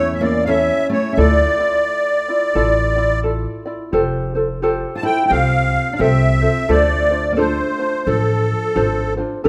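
This short Hawaiian fragment is set in a moderate recital hall reverb that lends it a soft, airy glow. A reedy musette accordion, shimmering with its musette tuning and carrying a boxy small-room character, sits up front and carries the melody. Beneath it, a dark, full-bodied fingerpicked steel-string acoustic guitar plays a second line. A light, fingerpicked ukulele supplies the accompaniment close to the listener, and a woody, thumpy pizzicato upright bass with gut strings anchors the low end. The mood is relaxed and dreamy, with a gentle swing in the eighth notes; a new section opens on an Fadd9 chord at 3.9 s, and the accordion and guitar stop at 9.1 s while the ukulele and bass ring on to the end.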